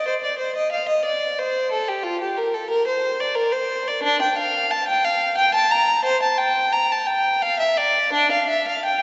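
A classical, baroque-style suite movement for unaccompanied violin, this radiant, dance-like fragment from a longer piece moves in a flexible 3/4 at 89 BPM with uneven, rubato beats, settling into F major from 4.0 seconds as a single period-style player bows a reedy, gut-string line from D4 to Bb5 with light vibrato, placed up front in a resonant church acoustic whose 3.6-second reverb tail and muted top end give the sound a soft glow.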